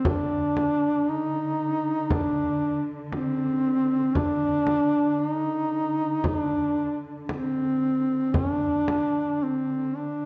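A mellow duduk sings a mournful, vibrato-laden folk melody up front, while a dark, woody chamber cello section holds a bowed drone close beneath it in this solemn Caucasian lament, taken from a longer piece. A deep, dry frame drum played with soft hands sits forward in the mix until 9.1 seconds, and the rubato feel lends the phrases a free, grieving sway. The sound carries the moderate reverb of a church or concert hall, and its highs are rolled off above 7.9 kHz.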